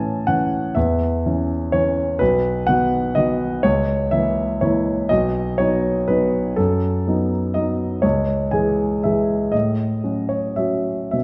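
A warm concert grand piano plays alone from 0.0 to 11.2 seconds in this playful, graceful classical waltz, cut from a longer piece and set in 3/4 with a rubato feel that drifts between 104 and 128 BPM. Sitting up front with a deep bass and short sustain, the piano ranges from B1 to A5, tuned to A4 = 441 Hz, and moves through harmonies such as A, B, A#dim/C#, C#m and F#m/A. A wet recital hall reverb with a 1.6-second decay surrounds the instrument.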